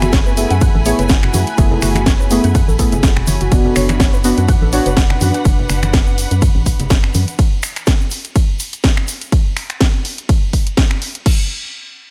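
A moody, hypnotic deep house drop at 124 BPM with a swung 16th feel opens on F#m11 with a dusty, warbling lo-fi pluck arpeggio, a soft, detuned chord stab pumping under the sidechain with chorus and digital delay, a hollow, organ-like FM bass, and a cracking, overdriven house kit of snare, hi-hat, ride, crash and finger snaps. An up-front, punchy overdriven kick lands at 0.1 s, while bright hand-played congas and a grainy egg shaker sit in the background and an intimate bowed string section adds vibrato-laced sul tasto texture before the harmony shifts to Bm/F# at 3.5 s. The mix is dry, and the stab, pluck, bass, congas and strings fall away in turn, leaving the kit, kick and shaker to carry the groove until the shaker drops out at 9.3 s and the kit and kick run on to 11.4 s.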